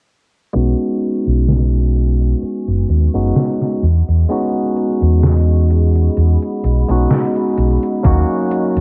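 Vaporwave excerpt at 64 BPM in B major, woozy and dreamy with a light swing, where a barky, bright tine electric piano with subtle chorus and analog delay plays up front from 0.5 seconds over a dark, round fingered electric bass and a detuned 8-bit drum machine of hi-hat and snare carrying 12-bit sampler grit, a warbling, nostalgic pad with chorus and reverb drifts in behind at 3.0 seconds, a thumpy electronic kick lands at 8.0 seconds, and a filter sweep moves through a cassette-tinged, dry mix as the chords pass from B69 to Emaj13 to D#m7.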